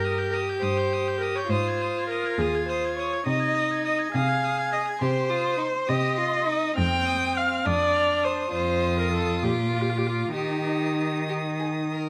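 A moderate recital-hall reverb gives this string quartet passage an open, resonant space, with the viola and cello sitting up front and the first violin placed at a distance. It is a quick, spirited and graceful classical-period movement in 6/8, played with a flexible rubato feel, and it is cut from a longer piece. The first violin carries the melody high in its register with a rich, focused vibrato tone, while the second violin, close and even, shapes a smooth second line in a lower register. The viola supplies clear, focused accompaniment. Beneath them, the cello anchors the bass with a bowed sound that is firm at the core and silky on top. All four players sound together from the start through about 12 seconds, and the harmony turns toward a new centre around 5.0 seconds before settling on a closing Eb chord at 10.3 seconds.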